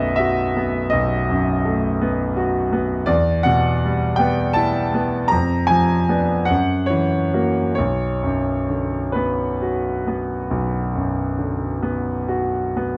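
Classical romantic nocturne for solo piano, mournful and wistful, moving in a rubato 12/8 that cuts in and out from a longer piece. The bright grand piano sits up front with a brilliant, vintage tone and long sustain, ranging from B1 to A#5 across chords that pass from B7 and Em through Fdim7 and F#7 to Bm at 7.8 seconds. Light reverb frames a dark, warm production.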